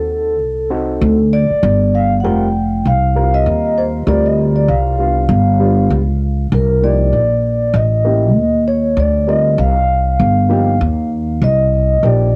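Mellow and cool, this jazz-hop excerpt moves at 98 BPM with a swung 4/4 feel in C minor, as a ringing, metallic vibraphone with soft mallets and slow motor vibrato carries the melody up front through cassette tape and analog delay, a dark, smooth baby grand piano with a vintage tape tint supplies the chords, and a woody pizzicato upright bass sits prominently beneath, all within the boxy ambience of a small room captured at home on cassette.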